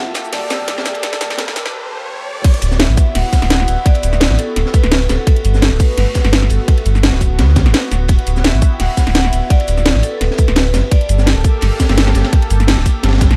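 A deep, full sub bass with an octave layer anchors this uplifting liquid drum and bass excerpt at 170 BPM in D major. A ringing, metallic vibraphone with dub echo carries the melody through a filter sweep over a riser and drum fill, until an overdriven electronic kick arrives with the drop at 2.4 seconds. From the very start, it is accompanied by a drum and bass kit with a cracking snare, bright hats, cabasa and crash, a gritty breakbeat kit with dark cymbals in the background, and a lush, detuned unison pad with chorus, phaser and sidechain pumping. The vibraphone falls silent at 12.6 seconds in a dry, warm production.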